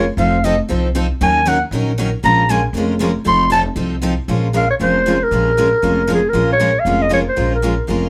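Bittersweet and fiery, this short cut from a longer acoustic string swing piece moves at a brisk, swung clip in a minor key. A growling clarinet carries the melody up front, its raspy, gritty tone shaded with vibrato as it takes a jazz-style solo through the first 4.3 seconds. Underneath, two picked steel-string acoustic guitars supply the accompaniment, both bright with fresh strings: one is a full-bodied dreadnought with audible finger squeak, the other a concert guitar sitting lower in the mix. A pizzicato upright bass on gut strings anchors the low end with a woody, thumpy sound, placed up front beside the clarinet. Light reverb gives the ensemble a sense of space as the harmony moves from F7 through Ebm7 and Bbm7 before the passage turns into a second section at 4.3 seconds.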